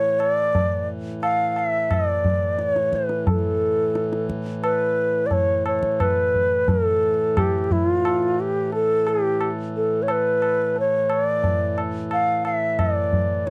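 A steady, straight 4/4 pulse at 88 BPM carries this short Hindustani classical excerpt in raga Charukeshi on A, its mood meditative and radiant. The bansuri holds the melody from the first moment, sitting up front and close-miked, its bamboo tone airy and touched with vibrato and tongued attacks as it moves between F4 and F5. Beneath it, a hand-pumped harmonium sustains a reedy, breathing drone between A2 and E3, set low in the balance with a boxy small-room character. The tabla enters at 0.2 seconds, high-tuned and ringing, heard close and dry. The whole recording has the feel of a dry, close 1970s studio session with moderate booth ambience and a layer of vinyl crackle.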